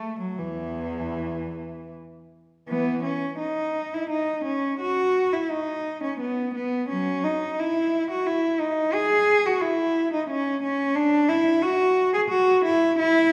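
A rich, bowed cello carries this baroque-style suite movement alone, one player sounding up front with expressive vibrato and portamento as it ranges from E2 up to G#4. The music sits in E major and moves in a dance-like, flowing 3/4, with rubato pulling the tempo between 76 and 91 BPM. A short opening idea gives way at 2.7 seconds to a new section that carries on to the close at 13.3 seconds, where this cut from a longer piece ends. The tuning sits slightly high, with A4 at 441 Hz. A wet recital hall reverb with a 1.4-second decay surrounds the instrument, and the room is heard from further back, lending the sound a spacious, resonant glow.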